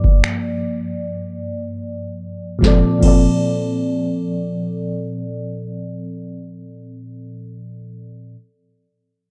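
Romantic and tender, this contemporary R&B fragment drifts in free time in Bb major, built around an up-front FM electric piano with a warbling, mellow vintage tone, a noise layer and a phaser, moving from Gm7 to Bbmaj9 at 2.6 seconds. A booming analog drum machine, with a deep kick, crisp snare, finger snaps and crash cymbal re-recorded in a large room, sits up front until 3.3 seconds, while the piano carries on to 8.3 seconds. The production is dark with little reverb.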